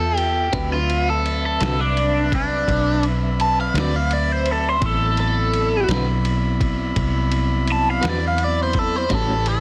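Rolling in a straight 12/8 at a slow blues pace, this short, swaggering and soulful cut from a longer piece rides a G13 to D13 change. An overdriven electric guitar sits up front and carries a bright, picked solo across the whole 9.6 seconds, its tone colored by a phaser. Beneath it, a dark, foam-muted fingered bass gives round, punchy low notes. A sampler-style drum kit arrives at 0.2 seconds with a pitched-down, muffled sound, a thumpy kick, a medium-tuned snare and ride cymbal. A mellow, flute-like tonewheel organ holds sustained chords through a slow rotary speaker, while a jazz-style horn section adds bright held chords with light vibrato and a second guitar, slightly broken-up through a small old amp with tremolo, picks accompaniment from 0.5 seconds. Light reverb surrounds the parts, and the master is dense and heavily limited in a modern way.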